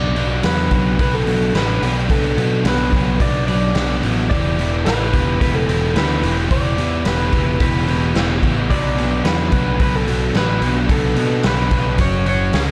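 Cool and moody, this indie rock excerpt moves at a straight 109 BPM in 4/4 over Bm, Em7 and F#5 chords, with a twangy, slightly broken-up electric guitar through a small old amp carrying the melody with slapback echo, a crunchy double-tracked overdriven guitar riff sitting up front, a punchy fuzz picked electric bass underneath, and a raw garage drum kit with saturated, gritty character, punchy kick and medium-tuned snare entering at 0.2 seconds, all in a dark production with light reverb and small room ambience.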